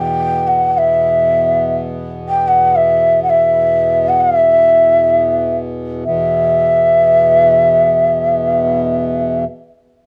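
Solemn and meditative, this Hindustani classical fragment in raga Darbari unfolds in free time, cut from a longer piece and running 9.4 seconds. A mellow bamboo bansuri carries the melody up front, its airy, soft-attacked tone wavering with vibrato and a slight unsteadiness, while a hand-pumped harmonium holds a reedy, breathing drone far below. The music moves into a new section at 6.1 s, and the sound has the gentle grain of a cassette home recording in a small room with moderate reverb.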